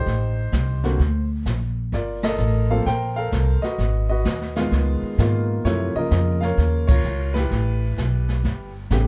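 A woody, plucked upright bass sits up front in this short jazz piano trio passage, its steel strings carrying the low end with a warm presence. The concert grand piano carries the melody with an intimate, natural tone, its deep bass register and audible action noise placing the listener close to the keys. Brushes work across the drum kit's snare, hi-hat, ride and kick, where dark cymbals, a medium-tuned snare and a punchy kick give the swing a warm, rolled-off glow. The mood is relaxed and sophisticated, with a lilting swung feel and a dry sound, as the harmony glides through lush chords such as Gm11, Db13 and Gbmaj7. The whole trio lands together on accents at 2.2 and 6.8 seconds, in what is clearly a brief cut from a longer performance.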